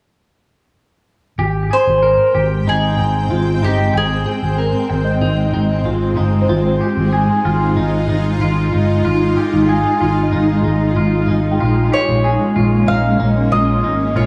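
Ethereal and floating, this dream pop excerpt drifts at 94 BPM in 4/4 with a straight feel, set in Ab major and moving from Abmaj9 to Fm9 and then Bbm7. A clean electric guitar enters at 1.4 s with picked arpeggios, its compressed, twangy, scooped tone softened by subtle chorus and analog delay, while a vintage muted fingered electric bass holds the low end with a dark, round, foam-muted sound sitting up front. A shimmering ambient pad arrives at 2.2 s with sustained chords, its detuned, octave-up shimmer carrying a slow attack, long release, granular grain, chorus and its own reverb. A picked mandolin carries the melody with a round double-string voice and analog delay, playing from 1.7 to 5.2 s and returning at 11.9 s, while a bell-like celesta with soft felt hammers adds delicate, sweet texture in the background through analog delay. The echo-heavy mix is bathed in moderate spring reverb and a small room, giving the whole passage a hazy, suspended glow.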